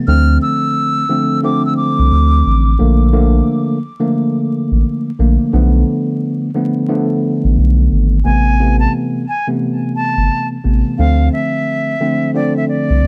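Moody and dark, this boom-bap hip-hop excerpt moves at 88 BPM in 4/4 with a 60% swing on the sixteenths, set in A harmonic minor. A worn, slightly out-of-tune tine electric piano carries the accompaniment from the start, clean and up front, filtered at both ends and sitting in its low-middle register. Underneath, a saturated sub bass enters at 0.1 s and holds the floor with a deep, thick, triangle-like tone, its fast attack and sustained notes sitting prominently in the mix. A bright, reedy concert flute plays the melody in two phrases, first briefly from 0.1 to 2.8 s and then returning at 8.2 s, its airy vibrato and crisp attack trailed by delay. The chords move from Dm7 through Bbmaj7 and Bm7b5 before landing on Amadd9 as the second section begins, then return to Dm7, all wrapped in light reverb and a layer of vinyl crackle.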